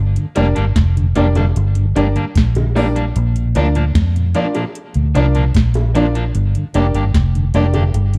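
Uplifting and warm, this short roots reggae excerpt rides on a dark, round, foam-muted electric bass that sits up front from 0.0 seconds, joined by a soft analog rhythm box with a deep kick, crisp snare and metallic hats. A mellow, flute-like tonewheel organ with key click and chorus vibrato hums very quietly alongside a slightly broken-up picked electric guitar carrying tape echo, while a worn, woody, slightly detuned upright piano adds boxy stabs coloured by tube saturation. Tight, high-tuned bongos played with hard hands enter at 1.4 seconds and sound distant in a large room, all within a dry mix that moves between Gm and Bb.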